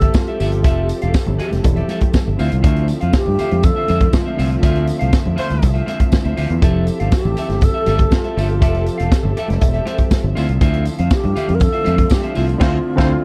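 An airy, mellow alto flute carries the melody from the opening of this joyful, danceable disco excerpt at 120 BPM in F major, over a natural, up-front vintage drum kit and a round, punchy fingered bass. Behind them sit a clean picked electric guitar in spring reverb, a reedy, lightly overdriven electric piano with tremolo, and lush, woody bowed strings holding sustained chords that move between Fmaj9 and Dm9, while very quiet, ringing congas and a jingly tambourine add percussion. A tight horn section hits brief stabs at 5.4 s and 12.6 s, marking the band accents in this dry, close 1970s-style studio sound.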